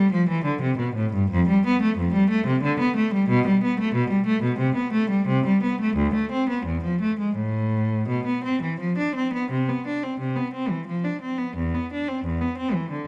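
A solo cello opens at once, bowed by a single player who sits up front in a moderate recital-hall reverb. This is a baroque-style suite movement for unaccompanied cello, its three-beat lilt giving a dance-like yet serene character, shaped with a flexible rubato. The cello's tone is rich and intense, coloured by vibrato, with a smooth top across a span from its low register up into the tenor range. Around 9.5 seconds the harmony brightens as the music moves into a new tonal centre, while the movement's opening material carries on. The production is dark and warm, and this short cut from a longer piece ends at 13.1 seconds.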